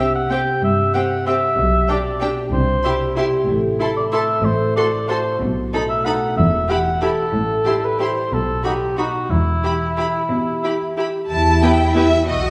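Heard through a wet scoring-stage reverb with a small-room ambience, this short excerpt from a longer film cue has a playful, whimsical and magical character, moving at 62 beats per minute in 6/8. A rich, smooth violin section carries the melody high up, while a mellow, up-front cor anglais with light vibrato sings a second line until 11.0 s, alongside a second violin section with a close, even tone. A distant, expressive viola section fills in the accompaniment, and a concert harp rings out fingerpicked arpeggios across a broad range. Underneath, a lush, focused cello section and a double bass section with a rich, even bowed sound share the bass. The harmony settles into E minor from 3.5 s, passing through a diminished chord and a B7 before coming to rest on Em at 9.3 s, with a brief new section beginning at 11.3 s.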